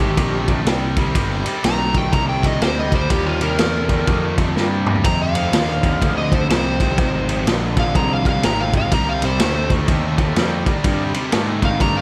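Smoky and heavy, this short cut from a longer piece is blues rock with a southern rock edge, moving at 124 BPM in 4/4 with a swung eighth-note feel in C minor. An overdriven slide guitar carries the melody throughout as a solo, its fingered tone warm over a double-tracked electric guitar riff that sounds bright and picked. Beneath them, a fuzz-driven picked bass growls, while a thick, gritty tonewheel organ sits very quietly in the background, holding sustained chords with audible key click through a rotary speaker. The raw garage drum kit, placed up front with a boomy kick, a medium-tuned snare, ride cymbal and toms, has a saturated, rolled-off sound and breaks into a short fill at 4.6 seconds. The harmony moves from Cm7 to Fm7 at 5.0 seconds and back to Cm7 at 8.9 seconds, all set in a small room with light reverb.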